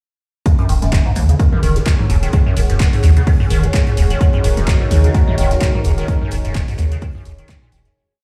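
Heard through a big sound system in a bare stone room, this short acid house piece carries a light reverb and a gritty, hypnotic mood at 128 BPM in 4/4, with a 56% swing on the sixteenths and an Eb minor pentatonic center resting on Eb minor. A punchy, tape-warm electronic kick drives four-on-the-floor up front, while an analog drum machine adds programmed claps, closed and open hats and a mid tom, and a very quiet acoustic studio kit sits far beneath with a looped, edited breakbeat of hi-hat and snare. The liquid acid bass is the star, a squelchy, resonant square-wave line of sixteen steps with accents, slides and filter sweeps, colored by phaser, overdrive, lush chorus, tape echo and sidechain pumping. Under it, a round sine sub bass plays off-beat notes from 0.7 seconds, pumping against the kick. A bright, blurred granular cloud pad drifts in at 1.4 seconds with slowly shifting chords and its own reverb, and a warbling, detuned vintage analog pad adds sustained chords from 4.2 seconds, just before the fade-out that runs from 5.5 seconds to the end.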